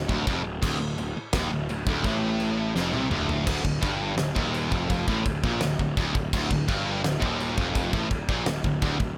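A double-tracked, overdriven electric guitar leads this short heavy metal excerpt, picking out a low riff in D phrygian at 168 BPM in a straight 4/4, with an aggressive, relentless mood. Beneath it, a fuzz-drenched picked electric bass adds a growly, amped low end an octave down, running the full length alongside the guitar. A big acoustic rock drum kit, set up front with a fat snare, tight kick, toms, crash and china cymbals, drives the music and carries the sound of a bright stone room. At 2.8 seconds the drums play a fill that leads into a new section at 3.5 seconds, which carries on until the cut at 9.2 seconds. The mix is dry and close, with little reverb, keeping the guitar and drums in the listener's face.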